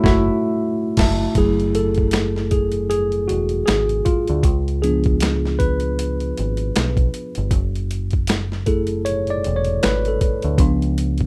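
A lightly swung sixteenth-note groove in 4/4 drives this sultry, soulful neo-soul R&B excerpt, built on a gritty, compressed, pitched-down boom bap sampler-style kit with a thumpy kick, high-tuned snare, hi-hat, finger snaps and crash cymbal. A dark, round picked electric bass enters at 0.1 seconds beneath a worn, slightly out-of-tune, mellow tine electric piano. After a band accent, the piano takes a solo from 1.4 seconds, with all three parts up front in a dry, rough home demo mix.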